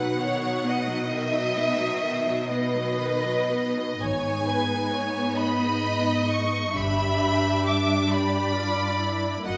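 A serene, lyrical passage from a slow romantic movement for string orchestra opens with four bowed sections: the first violins carry a smooth, close melody up front, the second violins add a lush, expressive line beneath, the violas give focused, warm accompaniment, and the cellos hold a distant bass. The rubato pulse in 12/8 moves at roughly 38-46 BPM in dotted quarters, with the harmony passing from B to G#m at 4.0 seconds and to G7 at 6.7 seconds. A rich double bass section enters quietly in the background at 4.0 seconds, and a recital-hall reverb surrounds the sections as this fragment of a longer piece closes at 9.6 seconds.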